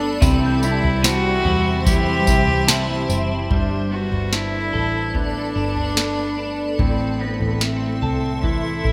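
Dream pop with a floating, dreamy mood, this short cut sets an up-front, reedy bowed cello melody with digital delay over a cloudy granular pad, chorused clean electric guitar arpeggios, a second twangy guitar with harmonic tremolo that stops at 3.5 seconds, a round foam-muted picked bass, a booming analog drum machine with deep kick, crisp snare, tambourine and toms in gated reverb, and a faint glassy FM synth bell that stops at 3.7 seconds, inside bright 1980s-style digital production with plate reverb.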